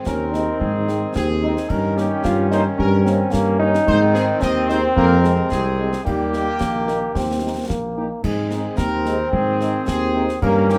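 A dark, distant trumpet section carries the melody of this rousing, festive military-style march for wind band in 2/4 from the very start, joined by a clear, punchy euphonium on a second line and a trombone section holding sustained chords with light vibrato in the background. The up-front tuba, dark with a smooth top, anchors the bass from 0.1 seconds alongside close, dry concert snare, bass drum and clash cymbals with shadowy cymbal tone, while a mellow, vintage-sounding French horn section adds very quiet accompaniment from 0.3 seconds. Moderate studio reverb gives the trumpets and euphonium a roomy feel in this short cut from a longer piece, with the harmony moving from Ab through Fm and Eb before landing back on Ab.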